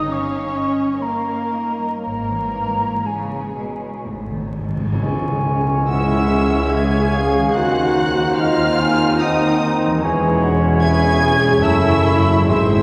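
A veiled, con sordino violin section carries the melody of this elegiac, melancholic slow romantic movement for symphony orchestra in C# minor, moving in a rubato 3/4 at 58-77 BPM. A hollow silver flute, a second muted violin section, a viola section and a ringing, fingerpicked harp in the background open together, with cellos, double basses and a very quiet cymbal swell and tam-tam joining at 2.0 s, and articulate, dry timpani fill in before a band accent at 5.0 s brings in a distant clarinet, cor anglais, bassoon, trombone section and close-miked tuba, followed by a very quiet French horn section. Everything sits in a wet church reverb with vinyl crackle, and the piece is cut from a longer work.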